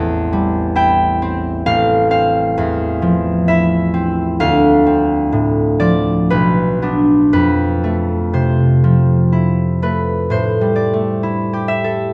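A ringing, up-front concert harp plays alone in this peaceful, graceful classical excerpt in F lydian, moving with a rubato feel in 3/4 at about 58-69 BPM through chords such as Am7, Dm9 and Fmaj7 across a range from A1 to C6, set in a reverberant stone room, before a new passage begins at 10.3 s and the clip ends at 12.1 s.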